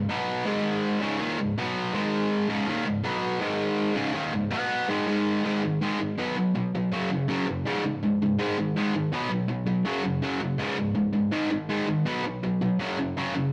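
A straight, driving 4/4 at 163 BPM carries this rowdy, energetic punk excerpt, tuned to A4 = 436 Hz, in which a lone bright, overdriven, double-tracked electric guitar sits up front for the full 13.5 seconds, its picked notes cycling through Cb5, Ab5 and Db5 before Gb5 joins the rotation at 6.9 seconds, all wrapped in the warm saturation and moderate stone-room reverb of a rough rehearsal-room recording.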